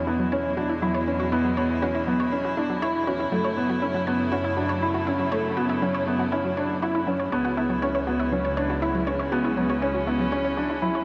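Electronica at 120 BPM in 4/4 with a straight feel, this short cut from a longer piece sits in F# minor and carries a moving, cinematic mood. A felt-muted upright piano is up front from 0.1 seconds, playing a soft, intimate riff through a low-pass filter and tape echo, its thin felt tone giving each note a short sustain. Around it, an analog pluck spins arpeggios with a round, detuned sawtooth sound, a fast attack and decaying notes, colored by chorus and tape echo. A string quartet holds bowed, woody chords with vibrato, one player per line, while a chamber double bass section anchors the low end with a reedy, gut-string tone and light vibrato in a period style. The harmony moves from E to F#m7 at 3.3 seconds and on to C#m7 at 7.3 seconds, and a huge ambient reverb lends the dark, warm production a wet, lingering space.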